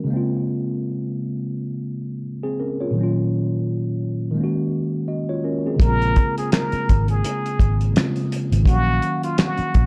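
Reflective and melancholic, this lo-fi hip hop excerpt from a longer piece moves at 84 BPM in Bb minor with a swung 16th feel, opening on a worn, slightly out-of-tune tine electric piano that is lightly overdriven and tape-softened, playing Bbm9, Ebm7/Bb and Ab9sus4 chords alone until 5.8 seconds, when a bright, close-miked, plunger-muted jazz trumpet with a wah-wah voice takes the melody, a dark, round, foam-muted fingered electric bass anchors the low end, and a cloth-damped, thuddy drum kit with finger snaps, hi-hat, a fat snare and a tight kick sits up front, all in a dark production with light reverb.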